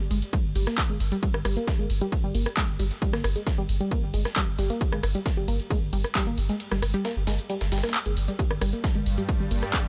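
Relentless and driving, this short cut from a longer peak-time techno track sits on a straight 4/4 pulse over a G minor chord. An overdriven, heavy electronic kick sits up front and drops out between 6.6 and 8.4 seconds, leaving a round, deep sine sub bass pumping under a sidechain and a low-pass filter. A tight sequenced sawtooth riff, detuned and dark with a filter pluck and moving notch, moves between G3 and Bb3 through chorus, sidechain pumping and dub echo. Two kits fill out the groove: an overdriven techno kit of handclaps, hi-hat, ride cymbal and rim click, and a very quiet, gritty, tape-toned sampler-style breakbeat kit with pitched-up hi-hat and a high-tuned snare. At 8.7 seconds a swarming, tense drone of wave-folded, granular sine and triangle tones creeps in with its own reverb and sidechain pumping, while the rest of the mix stays dry and dark at the top.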